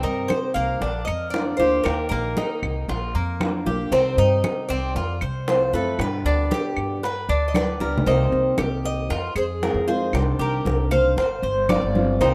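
Nostalgic and warm, this short excerpt of Cuban son and guajira moves at 116 BPM in a straight 4/4, set in C minor and cut from a longer piece. A Cuban tres carries the melody with a metallic, picked sound from its double strings, while a second tres plays arpeggios alongside it, and a dark, boxy fingerpicked old ladder-braced acoustic guitar fills in the accompaniment. An upright bass sits up front, plucked on gut strings with a thumpy, woody tone. Ringing, medium-tuned congas played with soft hands join at 0.1 seconds, tight high-tuned bongos struck with hard hands sound distant in the background, and dry claves tick close by, also in the background. The harmony moves from Cm through Bb, Eb and F to G, and after a drum fill at 7.8 seconds the second section shifts to richer colors like Cm7, Fm7 and G7sus4, all wrapped in a moderate plate reverb.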